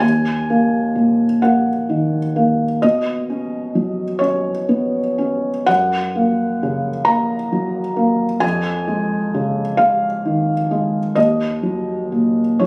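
A felt-muted upright piano plays alone throughout this short, tender passage of neoclassical minimalist piano, its soft, mellow tone sitting up front and intimate, with the audible action noise of the instrument in the room. In F# major and a slow 6/8 at 43 BPM counted in dotted quarters, the playing breathes with rubato and uneven beats, moving through D#m, Badd9, F# and C#add9/E# before returning to D#m at 11.2 seconds. A light reverb and compression frame the natural, close sound of a phone recording, giving this peaceful fragment of a longer piece a calm, private feel.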